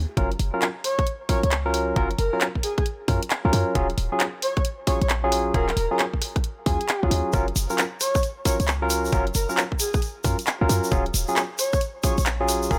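Bouncy and soulful, this swung two-step UK garage excerpt pairs punchy, tight 808-style bass and an up-front electronic kick with a layered garage kit of handclaps, hi-hat and rim click, while a barky, lightly overdriven tine electric piano with tape echo stabs out Gbmaj7 and Ebm11 chords, a breathy, flute-like synth lead with tremolo and lush chorus floats in at 0.8 seconds, and a grainy, mellow tube shaker joins at 7.3 seconds, all in a light reverb.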